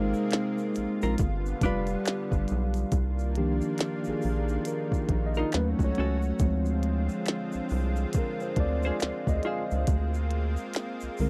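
A 4/4 groove at 69 BPM, swung 60% on the sixteenths, carries this soulful, smooth neo-soul and R&B passage in C minor, cut from a longer piece. Up front, a glitchy, overdriven electronic drum kit plays a soft kick, tiny snare and clicky hi-hats, with a quiet layer of acoustic egg shaker and finger snaps beneath it, while a rubbery, bouncy square-wave bass with a filter pluck and fast attack anchors the low end. A mellow, clean tine electric piano, heard through its built-in speakers, accompanies over a lush, thick pad of detuned sawtooth unison with slow attack, long release and chorus, and the piano takes a solo from 2.9 s onward. A dark, compressed hollow-body jazz guitar, picked and up front, adds a second line between 1.0 and 9.6 s. The harmony moves from Ab69 and G7 into Cm11, through D#m7b5 and Dm7b5 to Bb9, in a dry, close 1970s-style studio sound.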